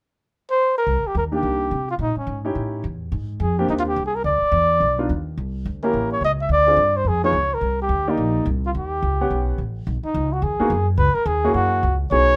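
Cool and smoky, this short excerpt cut from a longer piece is small-group swing and bop jazz in C minor, moving briskly at 214 BPM in 4/4 with a swung eighth-note feel. A mellow, close-miked flugelhorn carries the solo melody from 0.5 seconds, its soft attack, light vibrato and scooped notes sitting up front. The upright bass enters at 0.9 seconds, plucked and growly with a woody tone, also placed prominently in the mix. A warm concert grand piano joins at 1.3 seconds as accompaniment, sounding natural with a deep low end and short sustain. The harmony winds through colourful chords such as Cm9, Abmaj9#11 and A7b9 before shifting to a new section around 9.9 seconds built on G#m7 and C#madd9, all set in a light reverb.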